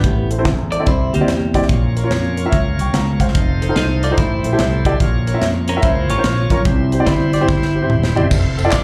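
A swung 4/4 groove at 145 BPM drives this uplifting, hopeful uptempo gospel excerpt, with a crisp, punchy fusion drum kit and a fingered electric bass sitting up front under a natural grand piano and a bright, clean, picked electric guitar line, both touched with slapback echo. A very quiet, mellow brass ensemble holds smooth sustained chords, while a shouting, lightly overdriven tonewheel organ with key click and slow rotary speaker joins at 1.7 seconds. A drum fill arrives at 7.5 seconds before tambourine and group handclaps enter at 8.3 seconds, all heard through a live club PA with light reverb.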